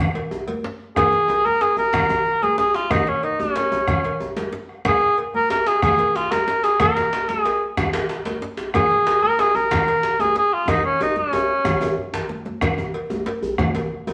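West African traditional drum ensemble music in a festive, earthy 12/8 feel, taken from a longer piece, with a mellow cor anglais carrying the solo melody up front from 1.0 to 12.1 seconds, its light vibrato and smooth top giving it a classical voice. Beneath it, a round, distant bombo, a metallic cowbell in the background, a deep djembe played close with soft hands, a tight, cracking djembe with metal rattles, and ringing high-tuned congas struck with hard hands fill out the percussion. A drum fill from 10.7 to 12.6 seconds leads into a brief closing section, all set in a wet studio reverb.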